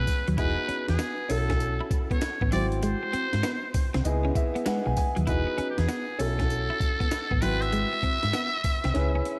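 A big, arena-sized sound bathed in lush hall reverb carries this flirty, upbeat new jack swing excerpt with a swung sixteenth-note feel, where a buzzy, growling metal-muted trumpet with vibrato and scooped notes leads up front over a smooth vintage grand piano with slapback echo (which adds a fill at 4.1 seconds), a round, dark hollow-body fingered bass, a clean picked electric guitar riff shimmering with analog chorus and slapback echo, and a compressed, pitched-up breakbeat kit of thumpy kick, high-tuned snare, hi-hat and tambourine that closes with a fill at 8.9 seconds.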